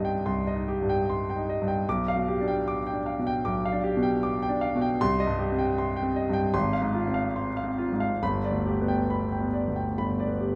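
Rubato phrasing in 4/4 drifts between 66 and 80 BPM in this passionate, bittersweet romantic character piece for solo piano in C minor, a fragment of a longer work lasting 10.6 seconds. The concert grand sounds warm and smooth with a deep bass and a vintage tone, placed up front and spanning G1 to D6, while a wet recital hall reverb with a 1.4-second decay surrounds it. The harmony moves from Cm through G7/B, returns to Cm, then passes through Fm/Ab before settling on G at 8.2 seconds.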